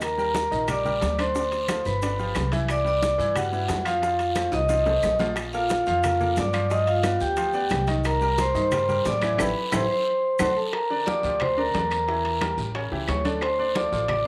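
An up-front, airy vibraphone with medium hard mallets and the motor off carries the metallic melody over growly, thumpy pizzicato upright bass, ringing congas, very quiet round low-tuned bongos, vintage metal-shell timbales, woody claves, raspy guiro and distant grainy maracas (which drop out at 10.5 s) in this passionate, danceable G minor salsa excerpt at 179 BPM, with a clear, intimate baby grand piano with audible action noise accompanying from 0.2 s, drum fills at 4.4 s and near the close of the first section, where a full-band accent lands, all set in a moderate echo-chamber reverb.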